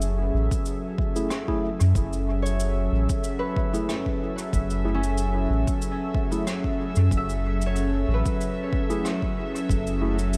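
A hazy, deep sound sits in light reverb, with the low end kept soft and the front of the picture crowded by bass, kick and pad. This ambient dub fragment, taken from a longer piece, moves at 93 BPM in 4/4 with a gentle swing on the 16ths, resting on a single F#m9 chord in F# minor. An airy, breathy pad holds sustained chords through a chorus, its detuned, ring-modulated body carrying a noise layer, while a round, sub-deep dub bass with tube saturation sits up front beneath it. A fingerpicked concert harp rings out arpeggios through tape echo, and a worn, slightly out-of-tune tine electric piano enters at 1.2 seconds with clean stabs sent into dub echo. The electronic kick drum arrives at 0.5 seconds, punchy and overdriven, while a distant, roomy cabasa and rim click are sent into dub echo. Far in the background, a bubbling, resonant stepped-filter texture holds an E5 with chorus and its own reverb.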